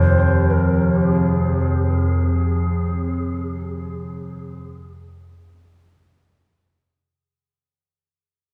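Dark ambient drone in free time and F minor, ominous and cut from a longer piece: an up-front analog drone with a warbling, resonant sawtooth tone and chorus sustains beneath grand piano arpeggios on a low Eb2 with short sustain and analog delay, while a distant, airy shakuhachi with a crisp, chiffy attack, vibrato and its own analog delay carries the melody until 5.7 seconds, set in an echo-heavy mix with spring reverb that fades out from 1.6 seconds.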